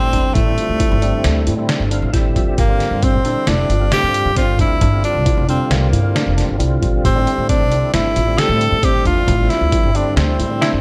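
A clear, close-miked tenor saxophone leads this driving, intricate progressive instrumental in 5/4 at 134 BPM, riding over a gritty, overdriven tonewheel organ with slow rotary swirl and a fill from 1.7 to 2.6 seconds, a dark, worn grand piano with tape echo murmuring arpeggios in the background, a woody pizzicato upright bass, a compressed, pitched-down trip hop drum kit with a thumpy kick, and a brief breathy alto saxophone note at 10.6 seconds, all moving through Am7 and Gm7 in light reverb in this cut from a longer piece.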